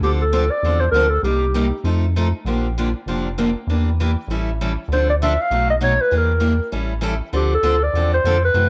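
Fiery yet bittersweet, this short cut from a longer piece of acoustic string swing in the jazz manouche style moves at a brisk clip with a swung eighth-note feel in 4/4. A mellow clarinet carries the melody up front, its subtoned, vintage jazz tone colored by light vibrato and scooped notes; it sounds from the start until 1.8 seconds, drops out, and returns at 4.9 seconds to carry on to the end. Beneath it, a picked steel-string parlour guitar plays accompaniment throughout, bright and boxy with fresh strings and an audible finger squeak, its sound carrying the grain of cassette tape. A rubbery square-wave bass holds the low end, hollow, bouncy and nasal, with a fast-attack filter pluck, a moving notch and a dark, resonant sustain. The harmony cycles through minor sevenths, dominant sevenths and half-diminished chords, all wrapped in light reverb and studio ambience that give the home cassette recording an intimate, lived-in feel.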